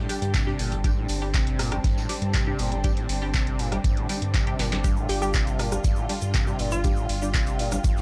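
Acid house at 120 BPM in a straight 4/4, this trippy, gritty excerpt rides on an up-front, deep electronic kick and a booming analog drum machine with crisp snare, metallic hats, handclaps and rim click, while a very quiet, dry 70s kit adds a fat snare, hi-hat and tambourine beneath. A squelchy, distorted sawtooth acid bass riff with a resonant filter sweep and tape echo snarls over a round, detuned analog bass, both breathing with sidechain pumping. A bowed studio string section holds intimate, sul tasto chords with gentle vibrato, and a moody, evolving pad with a sub octave and chorus sits in the background. Muted, full-bodied dub chord stabs drift through phaser and cassette-tape colour behind them. A drum fill lands at 4.6 seconds, a grainy tube shaker joins at 4.8 seconds, and a crystalline, warbling wavetable pluck plays a brief melody from 5.1 seconds, all within a light small-room ambience.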